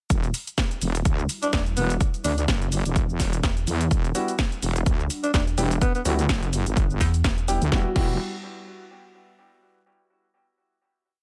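Bass house at 126 BPM in E minor, this short, complete piece is aggressive and gritty, with a 16th-note swing and a dry, close sound that opens straight into a drop on an Emadd9 chord. A punchy, tape-warm electronic kick sits up front in a steady four-on-the-floor, joined by a house kit of cracking snare, closed and open hi-hats, shaker and crash. A heavy, detuned, saturated wobble bass with chorus and sidechain pumping carries modulated low phrases, and from about 1.5 s a metallic FM bass, driven through tube saturation and also pumping, adds chopped digital phrases in the same low register. A raspy, close-miked alto saxophone growls short jazz-style solo phrases with vibrato and tape echo, while a very quiet, bright, resonant pad with chorus holds evolving sustained chords underneath. From 4.1 s a dark, mellow grand piano drops sparse chord stabs, one shape moved in parallel, with tape echo and sidechain pumping, before the drop gives way to a final chord at 7.7 s.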